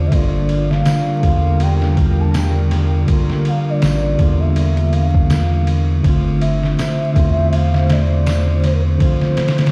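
Trip hop with a brooding, cinematic mood, built on an up-front, round analog bass with tube saturation and a muffled, pitched-down, overdriven sampler-style drum kit with a thumpy kick and medium-tuned snare, beneath a clean tine electric piano with harmonic tremolo and 12-bit grit, a dark, detuned pad in the background, a breathy, gliding sine lead with tape echo and vibrato, and a faint, saturated tambourine, all set in a stone-room reverb with vinyl crackle as the chords move from Gm7 to Dm7/G at 6.0 seconds.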